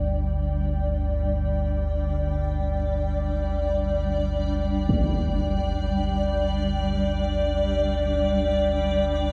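Dark ambient drone in free time, cavernous and desolate, where a deep, rumbling drone with a nasal, detuned edge and a cloudy, blurred granular pad holding sustained chords with shimmer reverb both sit up front for the full 9.3 seconds of this excerpt, broken only by a huge, dark, low-pass-filtered impact at 4.9 seconds, all bathed in a wet spring reverb.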